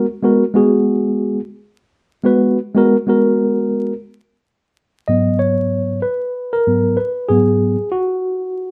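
A rough home-demo mix with vinyl crackle and a moderate studio reverb frames this smoky, nocturnal hip hop excerpt in G# minor at 95 BPM, swung on the sixteenths. A worn, slightly out-of-tune tine electric piano sits up front and plays throughout, ranging from G#2 to D#5 over a G#m9 chord. At 4.8 seconds the harmony moves to G#m7 as the electric piano takes a solo that runs to 8.7 seconds.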